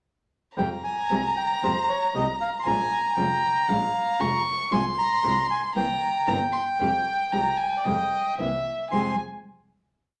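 Set in a wet club reverb with a 0.7-second decay, this short, complete tango piece in F minor moves at 116 BPM in 4/4 with a rubato feel and a dramatic, tense mood. A reedy, smooth bandoneon carries the melody up front in motif-based period phrases. A dark, nasal violin, bowed with vibrato and expressive portamento, traces a boxy counter-melody that also sits up front. A nylon-string guitar with fresh strings fingerpicks short tango chords in a deep classical style, with finger squeak audible, while a focused, bowed double bass marks the tango rhythm marcato in four. All four parts enter together at 0.6 seconds, moving through Fmadd9, Bbm7, Fm/C and C7 before settling on a final Fmadd9 chord at 8.9 seconds.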